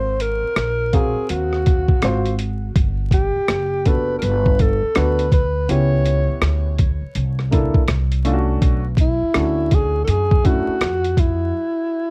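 A breathy alto saxophone sings the melody up front with a soft subtone and light vibrato, its line coloured by cassette tape and tape echo, in this cool, smooth jazz-hop excerpt at 82 BPM with a swung sixteenth feel. Beneath it, a dark, mellow grand piano plays the chords while a woody pizzicato upright bass sits up front, and a gritty, compressed sampler-style boom bap kit enters at 0.2 seconds with a thumpy kick, hi-hat and rim click. The dry home-cassette sound carries vinyl crackle, and the bass drops out at 11.5 seconds, leaving the saxophone to finish alone at 12.1 seconds.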